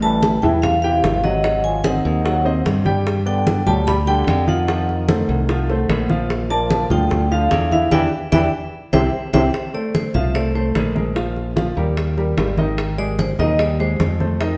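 Afro-Cuban jazz at 148 BPM in 4/4 with a sunny, danceable mood: a ringing, metallic vibraphone carries the melody with medium motor vibrato over an up-front, intimate grand piano with audible action noise and short sustain, while a bright, direct fingered electric bass anchors the low end and a breathy, whispered trombone plays a soft second line in the background until 9.4 s. Tight, high-tuned bongos sit close and dry beside damped, low-tuned congas with a thick-skinned sound further back, the band shares one wet stone room, and the harmony moves through chords such as Am7, F7b9 and Em7. After a band accent and a drum fill, the vibraphone takes a solo from 9.5 s over F, Eb and Abmaj7 before this excerpt is cut from the longer piece.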